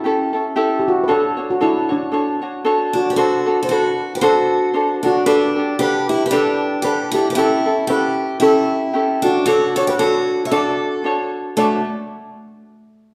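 Set in the lush, reverberant space of a church or concert hall, this dreamy, sunny Hawaiian excerpt moves with a gentle swing in four. A mellow, shimmering steel pan played with soft rubber sticks carries the melody over a light, fingerpicked ukulele sitting up front. At 2.9 seconds a bright, boxy parlour steel-string guitar enters with a picked second line as the chords drift from A7 through Dmaj7, D7 and Gadd9.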